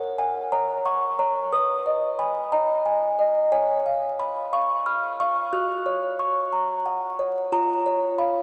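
Classical lullaby for music box, tender and dreamy, set in a straight 6/8. A lone music box carries the whole 8.4-second fragment, cut from a longer piece, its delicate, tinkling plucked tones sitting up front and spanning from E#4 up to F#6. Tape echo trails each note, and a lush hall reverb soaks the mix, giving the small, boxy instrument a hazy glow that is softened further by vinyl crackle. The harmony drifts from F#/A# through G#m/B to C#7, settles on F#, then leans onto C#/E# at 7.5 seconds, leaving the phrase open as the fragment ends.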